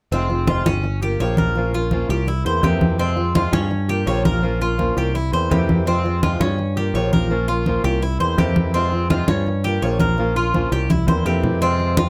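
This excerpt of Cuban son and guajira opens at 0.1 seconds with all four parts sounding together: a fingerpicked swing-style acoustic guitar, a Cuban tres, a picked electric bass and congas. The mood is sultry and nostalgic, moving at a brisk 167 BPM in a straight 4/4 in F harmonic minor, cycling through Fm, Gm7b5, Bbm and C7. The tres spins bright, metallic arpeggios on its double strings, some octave-doubled, above the dark, boxy fingerpicked chords of the guitar. Underneath, the bass sits up front with a growly, punchy tone, while the low-tuned congas ring out under hard hands. A drum fill arrives at 10.9 seconds, and the parts play on until 12.1 seconds, captured with close, detailed microphones and light reverb.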